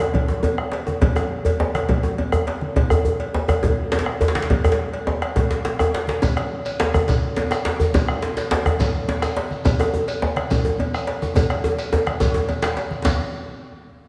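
A straight 12/8 pulse at 140 BPM that keeps speeding up drives this festive, powerful West African traditional drum ensemble excerpt, where a tight, cracking djembe with metal rattles sits up front over a round bombo, a deep background djembe, thick-skinned low-tuned congas and a metallic, saturated cowbell, with drum fills at 5.5 and 11.4 seconds, a grainy, mellow shekere joining at 6.2 seconds, and the whole ensemble bathed in a lush concert-hall reverb.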